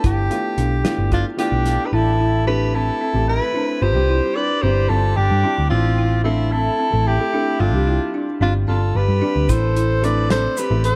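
A soft-attack soprano saxophone carries the melody up front in this intricate, bright progressive instrumental in 7/8, with dub echo on it, the breathy alto saxophone second line that joins at 1.1 seconds, the worn, intimate baby grand piano and the woody soft-mallet marimba arpeggios in the background, while a round, hollow-body picked electric bass anchors the low end, a soul drum kit with a punchy kick plays at the start and returns at 9.5 seconds, and a grainy tube shaker enters at the same point in an echo-heavy, small-room mix.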